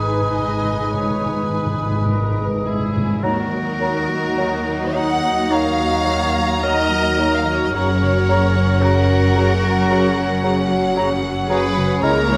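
Yearning and solemn, this slow romantic orchestral movement in 4/4 moves with a rubato feel at around 50-57 BPM, shifting from G# minor to Eb minor at 3.2 s as the French horns enter with distant, roomy sustained chords. Lush bowed violins with vibrato carry the melody over a second violin line with a soft attack, joined by an airy flute, a mellow oboe and a dark clarinet. Beneath them, a bassoon, focused violas, expressive cellos, woody double basses and a ringing thumb-plucked harp in arpeggios fill out the sound on a moderately reverberant scoring stage, while the timpani play a fill and fall silent by 4.9 s.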